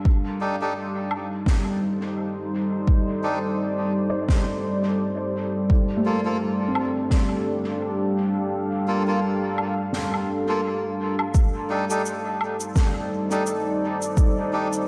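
A dreamy, reverb-soaked hall sound frames this deep, spacious ambient dub excerpt at 85 BPM with a swung 16th feel, where a dark, detuned sawtooth pad with chorus sustains chords from F13/G to G7sus2, a felt-muted upright piano plays soft, boxy arpeggios in the background through diffuse delay until 11.4 seconds, an overdriven electronic kick sits up front but drops out from 8.5 to 11.3 seconds, reedy, breathy melodica stabs ride a dub echo, and distant woodblock, snare and cabasa add roomy percussion.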